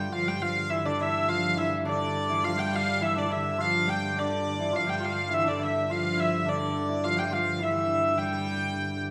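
Bathed in the wet reverb of a recital hall, this nine-second cut from a longer rustic, festive medieval dance moves at 104 BPM in a straight 2/4. A rich, smooth hurdy-gurdy carries the melody up front, while a bright, shimmering hammered dulcimer and a woody viola da gamba with light vibrato play second lines beneath it, and a nasal cornet solo stop on pipe organ, with tremulant, holds a drone throughout.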